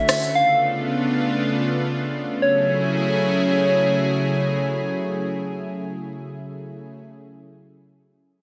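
Bathed in a lush hall reverb with a bright, 1980s-style digital sheen, this deep, late-night amapiano fragment in free time and F# minor pairs a thick, detuned sawtooth-and-square unison pad, up front with slow-attack sustained chords and chorus, with a round, keys-like FM lead whose gentle, decaying melody warbles with vibrato, chorus and delay, moving from a C#7b9b13 drop in the opening 2.4 seconds to an F#m9 chord.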